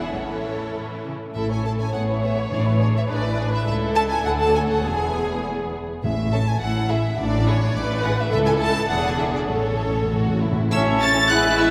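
A lively, spirited classical-period movement in A major at 103 BPM in 2/4 with a rubato feel opens on bowed strings in a church reverb: an intimate, up-front first violin section carries the melody over a lush second violin line, expressive violas, smooth, even cellos and rich, focused double basses. Very quiet, articulate timpani struck with hard mallets join at 1.4 s and sound close and dry, ending with a fill that closes at 10.7 s. At that point a clear solo oboe, a distant, very quiet clarinet and an airy flute ensemble add second lines, while a dark horn section holds sustained chords in the background.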